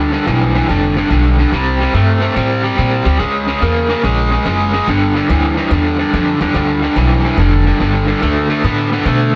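Laid-back yet rollicking, this brief electric blues shuffle excerpt sets a bright, overdriven, picked garage guitar riff with tremolo up front over a woody, thumpy pizzicato upright bass, both playing throughout in a light reverb as the chords move from G7 through C5 and C#m6 toward D5.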